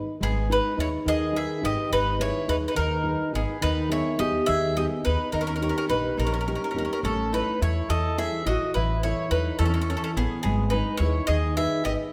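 A bright, up-front bowl-back mandolin carries the melody in this wistful, passionate Italian folk serenade excerpt in 6/8, alongside a round second mandolin line, a dark, woody, thumb-plucked nylon-string guitar accompaniment and a growly pizzicato upright bass, set in a wet recital-hall reverb as the chords move from G#m through D# to A and return to G#m.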